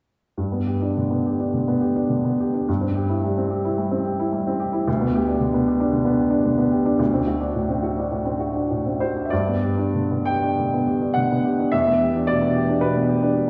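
A baby grand piano opens at 0.4 s with an open, short-sustained tone in this lyrical, warm romantic character piece, played with rubato through G, C/G, G/D and D7 before a new section at 9.3 s returns to G and then moves to Em7, the piano ringing in a wet recital hall reverb heard from further back in the room with a dulled top end, in a short excerpt cut from a longer work.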